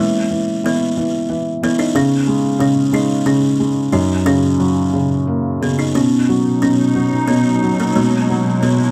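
In a dark, softly reverberant production, this sleepy, innocent lullaby fragment in a loose, rubato waltz time pairs an up-front buzzing kalimba melody, woody and hollow with a ringing thumbnail pluck, with a mellow, intimate accompaniment from a felt-muted upright piano whose action noise is audible, before a bright, detuned, warbling wavetable pad drifts in at 6.4 seconds with chorus and its own reverb.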